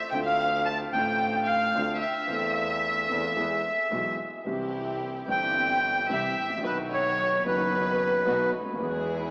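Sultry and dramatic, this rubato tango fragment puts a reedy, up-front bandoneon on the melody while a rich, distant violin traces a second line with vibrato and portamento. A concert grand piano with audible action noise and a vintage tone supplies the accompaniment over a focused, bowed double bass. At 4.5 s a dark string section adds soft, sul tasto stabs in the background as the chords move from Dm7 through Am/E and E to C and B, and the whole passage sits in a vast, echoing cathedral reverb with a small-speaker sound.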